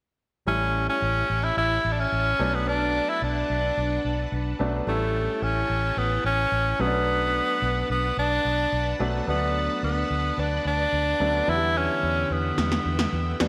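A clear, punchy tenor saxophone carries the melody up front from 0.5 seconds in this uplifting, glossy 1980s-style pop excerpt, over polished baby grand piano, a round, foam-muted electric bass and shimmering, chorused string-machine violins in the background, all bathed in plate reverb and bright digital production, with a gated electronic snare fill entering at 12.6 seconds.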